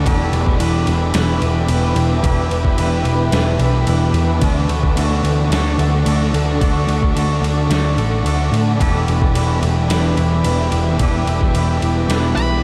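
A thick, fuzz-drenched guitar riff runs through this blissful, wistful shoegaze and dream pop excerpt, its distortion thickened by an ensemble chorus as it moves at a steady 110 BPM in a straight 4/4. Beneath it, a dark, round, foam-muted electric bass carries the low end, while a twangy, clean, fingered electric guitar plays its own riff through a reverse reverb. A detuned 8-bit drum machine with a thumpy kick, a medium-tuned snare and ride cymbal adds a sampler-style, tape-warm pulse that sounds re-recorded in a large room. In the background, an ethereal, airy pad of detuned sawtooth and triangle tones holds slow-attack chords through Em7, D and back to Em7, with chorus and its own reverb. The whole mix is soaked in a huge, dreamy ambient reverb, and at 12.4 s a dark, up-front octave-fuzz lead guitar slips in on a single high note just before the cut.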